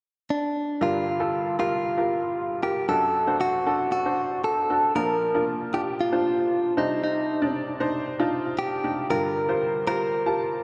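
A straight 4/4 pulse at 116 BPM carries this earnest, bittersweet pop fragment in G minor, tuned to A4 = 438 Hz, where a clean, compressed, direct-recorded electric guitar picks the melody from 0.3 seconds over a brilliant, woody, worn and slightly detuned upright piano entering at 0.8 seconds, both up front with tape echo and set in a wet spring reverb and small room as the chords move from Gm7 through D/F#, Bb and Cmadd9 back to Gm7.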